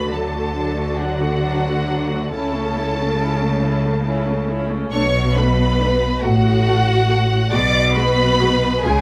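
Set in a rubato 6/8, this elegiac, solemn slow movement for string orchestra is a brief cut from a longer romantic classical piece, with all five sections bowed with vibrato. A lush, focused first violin section carries the high melody from a distance, while a second violin section adds a smooth-topped line beneath it, violas supply close, even accompaniment, and rich cellos pair with dark, woody double basses on the bass. A moderate, large studio reverb surrounds the strings as the harmony moves from D through A/C# and Bm7 to a Bm6 at 7.5 seconds, with the passage running about 9 seconds.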